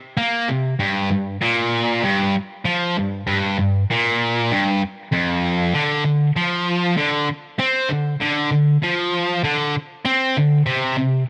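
A dry recording captures a raunchy, driving rock excerpt at 97 BPM in a straight 4/4, where a sludgy, overdriven, double-tracked electric guitar, picked and up front, plays alone from 0.2 to 11.2 seconds across a range from F2 to C4.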